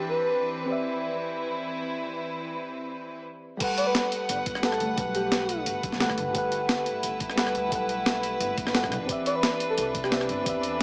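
Liquid drum and bass with a warm, lush mood, where a round, warbling FM electric piano and an earthy chamber string section hold soft chords from the start, a breathy flute-like synth lead with chorus and tape echo adds brief phrases, and at 3.6 s the drop brings in a gritty, compressed breakbeat kit up front with a knocking electronic kick, joined at 4.3 s by a woody pizzicato upright bass, the whole set in a hall reverb with a small-speaker tone.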